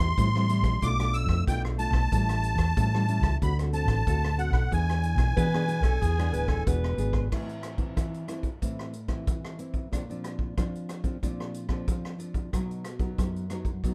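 A dry, rough home-demo sound frames this lively, yearning samba and choro cut in A minor at 92 BPM, where a reedy, shimmering musette accordion carries the melody over fingerpicked classical nylon-string guitar, a dark, round hollow-body electric bass sitting up front, and a roomy big-band drum kit with a boomy kick, crash, hi-hat and rim clicks. A breathy tenor saxophone slips in a mellow, subtoned second line with vibrato and scooped notes at 5.4 s. The accordion drops out at 6.6 s, and the bass and saxophone fall away at 7.3 s, leaving the guitar and drums to carry the closing stretch over Am, Bbadd9 and B.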